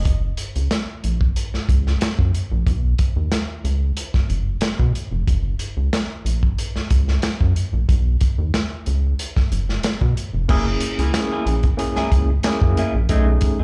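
A straight 92 BPM funk groove in F# mixolydian struts along on a crunchy, saturated breakbeat kit with dark cymbals and a tight kick, while a rubbery, hollow square-wave bass bounces up front over F# and Badd9 chords. After a brief jab at the very start, a barky overdriven electric piano with medium tremolo and slapback echo returns at 10.5 seconds to jab in stabs beside a clean, twangy phased guitar, all heard as a gritty live gig through the venue's PA with club reverb in this short cut from a longer piece.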